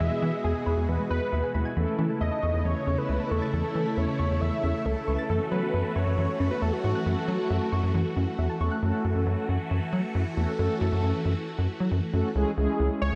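All five parts open together at 0.0 s in this bright, nostalgic pop excerpt at 136 BPM: a thick, bold unison lead with tape echo carries the melody up front, over mellow synth brass with chorus, a swirling phased string machine holding sustained chords, and soft, round plucked arpeggios with chorus and tape echo sitting in the background. Anchoring it all is a rubbery, hollow square bass, the loudest part, while the chords move from E to A and F#m7 before settling on C#m at 12.4 s. The plucks drop out at 8.8 s as a new section begins, and the dreamy mix is soaked in cathedral reverb.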